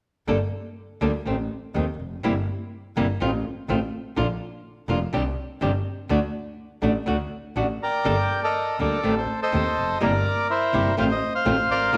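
Rubato and loosely pulsed around 124 BPM in 4/4, this melancholic, dramatic G minor tango fragment opens with an up-front, fingerpicked flamenco guitar and a single bowed double bass whose biting tone carries a light vibrato. At 7.8 seconds, a reedy, dark, vintage-sounding bandoneon joins them with the melody, all set in a moderate recital-hall reverb.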